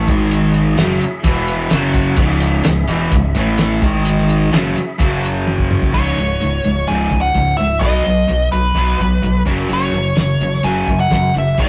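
A faint, fat tonewheel organ holds sustained chords through a fast rotary speaker alongside two overdriven guitar riffs, one bright and up front, the other sludgy and set back, plus a growling, overdriven fingered bass. A damped 70s kit with a fat snare, tight kick and dark cymbals drives this gritty classic rock excerpt in C# minor at 128 BPM, with a drum fill ending at 5.9 seconds. At that point the organ drops out and a nasal, dark lead guitar with a parked wah takes the melody up front, all set in a moderate stone room with the saturated grit of a rough rehearsal-room recording.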